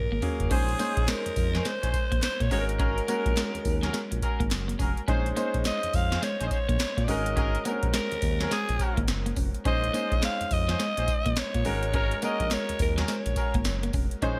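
New jack swing R&B at 105 BPM with a swung 16th feel, this punchy, confident cut from a longer piece opens on a drum fill from a booming analog drum machine with gated reverb, deep kick and crisp snare, then rides a smooth sawtooth synth bass, a concert grand piano with audible action noise, a clean electric guitar riff with subtle chorus, tight vintage horn stabs and barely audible group handclaps, all under a raspy, gritty alto saxophone melody full of scooped notes, as Ab9sus4 and Bbm11 alternate in a bright 1980s-style digital production.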